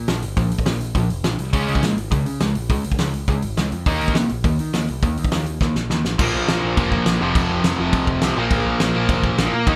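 Punk rock at a brisk 206 BPM, this rebellious, upbeat fragment of a longer piece runs power chords from Bb5 through Db5 and Eb5, then shifts at 6.2 seconds to a new passage moving among Bb5 and F5. A loose, roomy acoustic drum kit sits up front with a fat snare, tight kick, crash and hi-hat and a rolled-off top, and it plays a fill from 5.6 to 6.2 seconds. Two picked electric guitars share the riff, one warm and overdriven, the other bright, distorted and compressed in the background, over a dark, round, overdriven picked bass, all in light reverb.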